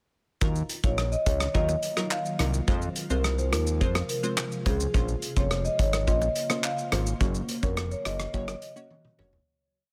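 A dry, close-sounding dancehall piece with a hypnotic, tough mood, built on a punchy, up-front acoustic kit playing a sparse beat with rim clicks, handclaps, hi-hat, shaker and toms, under a fat, detuned sawtooth bass line that is syncopated and slides. Crisp, warbling digital chord stabs with a plucky filter carry the syncopated accompaniment. A marimba played with medium mallets states a warm syncopated hook, while very quiet, low-tuned bongos add a close bongo pattern and an ethereal, airy pad with chorus, phaser and pumping sits in the background, the pad entering at 1.5 seconds. The whole piece fades out from 7.2 seconds, closing on a drum fill at 8.9 seconds.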